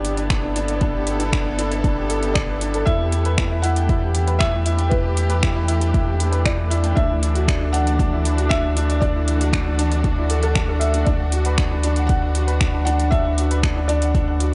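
A round, up-front sub bass with tube saturation and sidechain pumping anchors this melancholic, cinematic piano and strings electronica fragment, where a clear, woody, slightly detuned upright piano riff and a soft, felt-muted upright piano melody, both carrying tape echo and shimmer reverb, ride over lush bowed symphonic strings that pump with the sidechain, while an overdriven deep house kit of finger snaps and metallic hi-hats and a deep overdriven electronic kick, entering at 0.3 seconds, add a produced pulse through a Gadd9, Em, Dadd9 and Bm/D progression in a small, lightly reverberant room.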